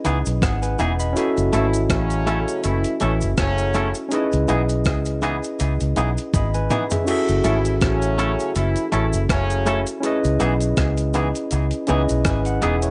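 Bittersweet and full of longing, this fragment of lovers rock reggae moves at an unhurried 81 BPM in 4/4, with a gentle swing on the sixteenths and a harmony that rocks between C#m9 and F#m7 in F# dorian. A bright, barky tine electric piano sits up front, lightly overdriven through a combo amp, while a clean, twangy electric guitar adds compressed stabs trailed by tape echo. Beneath them, a dark, round, foam-muted electric bass carries the low end prominently, and a crisp 8-bit drum machine supplies a thumpy kick, hi-hat, rim click, crash and toms, overdriven, echoed and re-recorded in a small room, with a fill at 6.3 seconds. A cabasa ticks close and dry in the background. From 1.5 to 9.8 seconds, a punchy horn section enters as a second line, tight and doubled in octaves with vibrato, sounding distant and roomy under tube saturation, all set in a light reverb with a softened top end.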